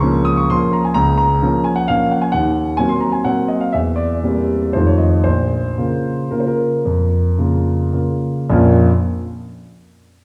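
A wet recital hall reverb with a 1.6-second decay surrounds this short passage cut from a longer piece, yet the warm, natural grand piano still sits up front, its long sustain ringing across a range from Bb1 to Eb6. It is an elegant, bittersweet classical waltz in Bb minor and 3/4, played solo with rubato at a tempo that moves between 103 and 137 BPM, passing from Bbm/Db through Cm7b5/Eb, C7/E and F7 back to Bbm. The playing slows down from 4.5 to 8.5 seconds, where a new section begins shortly before the piano stops at 8.9 seconds.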